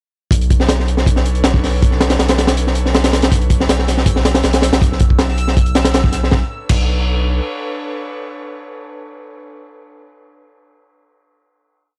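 A dry, gritty cassette-tape sound in a small room frames this frenetic, nostalgic drum and bass and jungle piece at 160 BPM in B minor, where a heavily chopped, punchy breakbeat kit with a high-tuned snare and a deep, saturated sub bass with long gliding notes drive the drop from 0.3 seconds, a very quiet looped break slips in behind at 3.3 seconds, a reversed, dreamy swelling texture holding a high note follows at 3.7 seconds, and an airy, breathy chorused pad sustains Bm9 and Em69/B chords into a final Bm9 chord that holds until 9.4 seconds.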